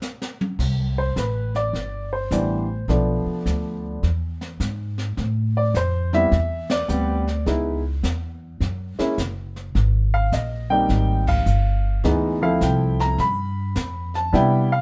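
Brushed drums open this playful, swinging jazz piano trio excerpt, setting up a 105 BPM swing in 4/4 with dusky cymbals, a high-tuned snare and a boomy kick, all with a rolled-off top in a studio room. The pizzicato upright bass enters at 0.6 seconds, woody and up front with a steel-string edge, ranging from F#1 to C3. Moments later a warm, natural baby grand piano takes the melody, also up front, moving between E3 and B5. The harmony in C major winds from Cmaj7 through Bm7b5, E and Am7, slips to Dbm7 and a chordless passage, then lands on Abmaj7 before a Dm7 to G7 turnaround. The whole band hits accents at 6.6 and 11.2 seconds, all under a light reverb.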